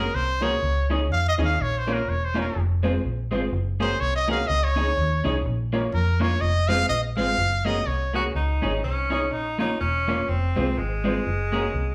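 A bright trumpet with vibrato and a smooth top carries the melody up front in this bouncy, upbeat ska excerpt, soloing until 8.1 seconds. At 8.2 seconds a clear tenor saxophone with light vibrato picks up the melody, sounding distant and roomy yet placed up front. Underneath, a round, dark, foam-muted vintage electric bass sits prominently, while an electric guitar at the edge of break-up adds compressed, picked accompaniment through tape echo, and a woody upright piano plays natural-toned stabs. The tempo is 124 BPM in 4/4 with a swung eighth-note feel in D-flat major, cycling through Gbadd9, Dbsus2, Bbm and Fm. The band plays live in one room, bathed in a wet, large studio reverb.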